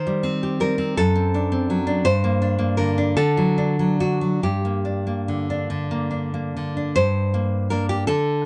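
Intimate and passionate, this brief romantic excerpt for solo classical guitar in G minor unfolds in a slow, rubato 6/8 at 46-56 BPM, the fingerpicked nylon-string guitar sounding bright and full-bodied with fresh strings, placed up front by close, detailed microphones in light reverb as it moves through chords from Cm/Eb and D7/F# to a resolution on Gm at 4.4 seconds.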